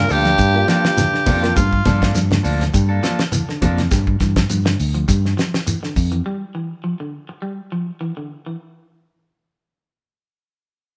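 Heard with light reverb, as if the band were playing live in one room, this short afrobeat fragment cut from a longer piece sits on a funky, defiant Gm9 chord in G dorian at 102 BPM, with a gentle 16th-note swing. A raspy, gritty tenor saxophone carries the melody up front with light vibrato, joined by a bright, soft-attacked bass trombone on a second line and a barky, reedy electric piano, lightly overdriven and set in the background; all three drop out within the first 2.1 seconds. A punchy, round fingered bass and a damped 70s drum kit, with a fat snare, tight kick and rolled-off top, hold the front of the sound until 6.2 seconds. A grainy, mellow shekere and low-tuned congas with a thick skin add percussion, while a clean, picked electric guitar plays stabs with spring reverb. The twangy guitar at the edge of break-up keeps its arpeggios going, also through spring reverb, and is the last part sounding at 8.5 seconds.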